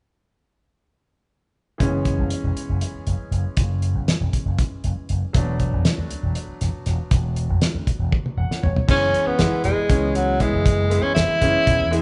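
Cut from a longer piece, this nocturnal, slick electric jazz fusion groove in 7/8 at 237 eighth-note beats per minute opens at 1.8 s with bright baby grand piano chords carrying audible action noise, a punchy slap bass through an envelope filter and a damped, fat-snared 70s drum kit moving from F#9sus4 to E9sus4, until drum and piano fills at 8.1 s usher in a clear tenor saxophone melody with light vibrato and scooped notes at 8.9 s, the band heard playing live in one room under a moderate large-studio reverb.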